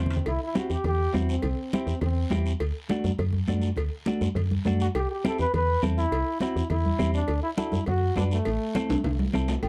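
Driving and danceable, this cumbia excerpt at 205 BPM in 4/4 puts an up-front trombone solo with light vibrato and a punchy pop edge over a clean, compressed, fingered electric guitar and a round, woody FM bass moving through C, D, Dadd9 and Am, while soft-handed congas, a raspy guiro and ringing timbales and cowbell keep the groove going; a drum fill arrives at 8.9 seconds and a single dry, rustic marimba note sounds at 9.6 seconds, inside a dark, warm production with light reverb.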